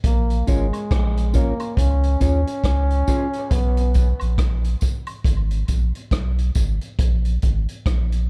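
A dark, heavy mix sits in a small room with light reverb, giving this short dub reggae fragment a hypnotic pull at a slow 69 BPM in 4/4 with a swung sixteenth-note feel. A round, sine-like sub bass sits deep and up front between Ab1 and Eb2, its fast attack and sustained notes anchoring the groove beside a vintage acoustic drum kit of hi-hat, punchy kick and rim click with a rolled-off top. A mellow trombone carries the melody from 0.1 s to 4.0 s, smooth and lightly vibrato-tinged, its notes trailing into dub echo. A clean, fingered electric guitar adds shadowy accompaniment higher up, also soaked in echo, while close, dry tambourine and woodblock tap quietly in the background until 6.8 s. The harmony moves from Bbm to Db, pauses on an unharmonized stretch, then settles through Abm to Absus2 as one part drops out at 7.0 s.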